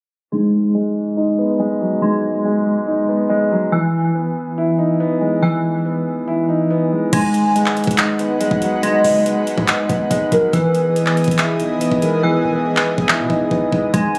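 Captured on a phone in a studio room with light reverb, this dark, brooding half-time hip hop and trap excerpt opens with a mellow, vintage grand piano up front and glassy, detuned digital key arpeggios carrying chorus, tape echo and a filter sweep, until at 7.1 seconds a hollow, woody clarinet-like synth lead with tape echo, an airy, breathy pad, a punchy 808-style bass sitting in the background and an up-front trap kit of knocking kick, metallic hi-hats, handclaps and crash cymbal join in, the hi-hats dropping out from 12.2 to 13.9 seconds.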